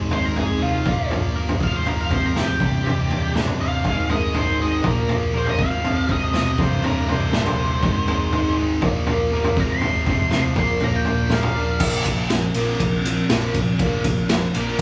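A brief, dark and cathartic stretch of quiet-loud alternative rock at 121 BPM opens with a very quiet, twangy twelve-string electric guitar picking clean arpeggios, a bright overdriven guitar riff and a growly fuzz bass in the background, joined at once by a raw garage drum kit that sits up front with a punchy kick, gritty saturation and a rolled-off top. An octave-fuzz lead guitar with a distorted, shadowy tone carries a soloing melody over a cycle of Ab, Bb5, Fm/Ab and Csus2, while a second overdriven guitar riff with spring reverb enters at 3.8 seconds. At 11.8 seconds the lead and twelve-string stop, leaving the riffing guitars, bass and drums to push into a new section on Bb5, all captured as a band playing live in one large room with moderate reverb.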